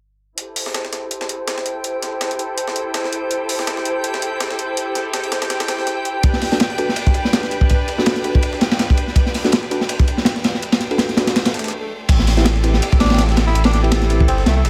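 A crunchy, saturated breakbeat kit crashes in at 6.2 seconds over a compressed, pitched-up sampler-style break and a rich, bowed string section under a filter sweep in this nostalgic, atmospheric jungle-flavoured drum and bass excerpt, while a reversed, dreamy texture and deep, nasal chord stabs with chorus and dub echo drift along until an electronic swell and brief break give way at 12.1 seconds to a thick sine sub bass, joined at 13 seconds by a raspy, growling tenor saxophone with dub echo.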